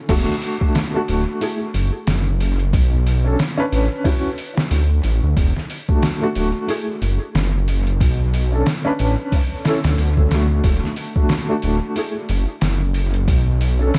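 A deep, rumbling detuned saw bass sits up front in this brooding, smoky trip hop excerpt, its beating sawtooth tone mixed with square and sine colours and a fast attack that settles into sustained, mellow low notes. Beside it, a compressed, pitched-down drum kit thumps with a muffled kick, a medium-tuned snare, hi-hat and crash cymbal, its overdriven sound re-recorded in a small room and smeared by dub echo over a lazy 16th-note swing. A felt-muted upright piano plays soft, intimate accompaniment from the very start, its vintage tone shimmering with tremolo and tape echo. The harmony cycles through E9sus4, a chordless stretch, Bm7 and Dmaj9, repeating as the passage runs its short 14-second course. The mix is dry in terms of room sound yet heavy with echo, and vinyl crackle lends the whole recording a dusty, late-night haze.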